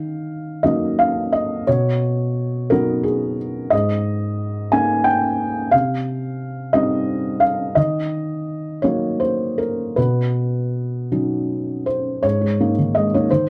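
A felt-muted upright piano plays alone from the start, its thick-felt tone soft, dark and mellow, sitting up front in a small room with moderate reverb. This neoclassical minimalist piece moves in a rubato 6/8 at 52-60 BPM, tuned to A4 = 439 Hz and spanning Ab2 to Ab5, as its intimate, hopeful harmony cycles through Ebm, Badd9, Absus2 and Cm. At 12.2 s a new passage opens on Absus2, and the fragment ends at 13.5 s, cut from a longer piece.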